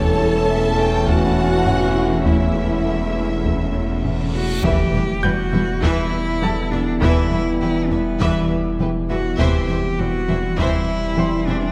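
This tense, brooding excerpt of a hybrid orchestral and electronic film score opens with an expressive violin section carrying the melody with vibrato and portamento over a lush second violin line, dark violas, clear trombones and distant French horns holding chords, a glassy FM pad with ensemble chorus, a soft, round pluck playing arpeggios, and a low foundation of bowed double basses, a chamber cello section and a pure sine sub bass; a heavy, saturated taiko ensemble enters at 1.1 s, a brilliant baby grand piano soon adds delayed texture in the background, and at 4.3 s a reverse cymbal leads into a huge impact as a warm, close solo cello takes up a melody with delay, the whole ensemble sitting in a wet scoring-stage reverb.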